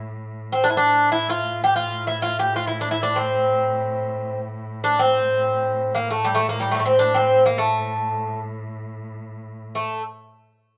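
Turkish makam ensemble music in free time and A makam kurdi, soulful and hypnotic, where a bowed cello holds a smooth, distant A2 drone with vibrato from 0.0 to 9.8 seconds beneath an up-front Greek bouzouki whose bright, metallic picked double strings, some octave-doubled, carry the melody between G3 and G4 from 0.5 to 10.0 seconds, all in a rough home demo mix with a wet small-room reverb, cut from a longer piece.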